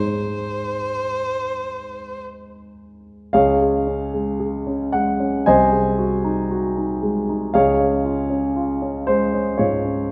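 Romantic classical duo for violin and grand piano, serene and unhurried, drifting in a rubato 4/4 at roughly 52-59 BPM in A-flat major before moving to D-flat major at 3.3 seconds. The rich, focused bowed violin sings its brief vibrato melody on C5 up front until 2.2 seconds. The dark, mellow grand piano carries on with deep-bass accompaniment through chords of Ab, Db and Ab7/C until 10.1 seconds, all bathed in the lingering reverb of a scoring stage in this fragment of a longer piece.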